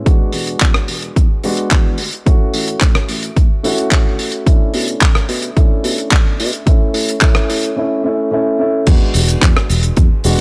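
Nu-disco with a straight, groovy, feel-good pulse, this cut from a longer piece sets a mellow, boxy grand piano through a low-pass filter and analog delay over a round, foam-muted fingered bass pumping to the sidechain, a dry, rolled-off 70s kit of hi-hat, rim click, handclaps, cabasa and crash, and a punchy, up-front electronic kick, all moving from E7 through Dmaj7, Bm11 and A in a build-up that drops at 8.9 seconds, with a gritty, tape-saturated small-room sound.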